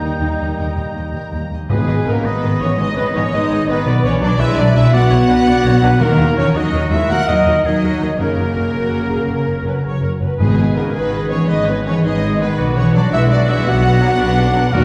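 Lush violins with vibrato carry the melody in this adventurous, determined heroic film-score excerpt in 12/8, joined by a very quiet second violin line, a clear oboe, a dark, distant clarinet and an airy, hollow flute ensemble on second lines, an expressive viola section with portamento in the background, sustained chords from a roomy French horn section and a very quiet trombone section, mellow trumpet stabs, ringing fingerpicked harp arpeggios, a rich cello section and an up-front double bass section on the bass, and round soft-mallet timpani hits from 1.7 s, heard from further back in a wet scoring-stage reverb.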